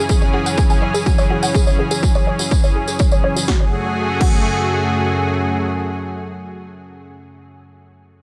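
Dramatic, cinematic melodic techno excerpt at 124 BPM in F# minor, where a lush, detuned unison pad holds sustained chords over an evolving, warbling analog drone, both pumping with sidechain and chorus, while a woody, nasal wave-folded pluck spins tape-echoed arpeggios until 4.3 s, an overdriven, up-front kick drives the beat alongside a jingly tambourine and a punchy analog drum machine's filtered snare, hi-hat and crash, and the harmony moves from E6 to F#madd9 at 3.5 s within a digital ambience.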